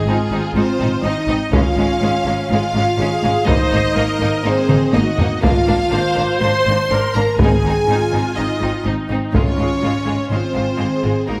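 A wet scoring-stage reverb, about 1.7 seconds long, wraps this triumphant, majestic orchestral film cue at 123 BPM in a steady 4/4, cut from a longer piece. Clear, smooth violins carry the melody with vibrato, while a distant, intense second violin line and lush, even violas fill the middle beneath mellow French horns holding sustained chords. Dark, woody double basses and rich cellos, set in the background, anchor everything on a low Ab. Heavy-stick taiko drums with a vintage, band-limited tone drive the cue from 0.8 seconds, and the very quiet timpani sounds briefly at the start before returning from 5.4 seconds after a drum fill. The harmony stays rooted on Ab, moving through Db, Eb minor and Bb chords over that pedal, returning to Ab and then shifting to Db as the excerpt ends.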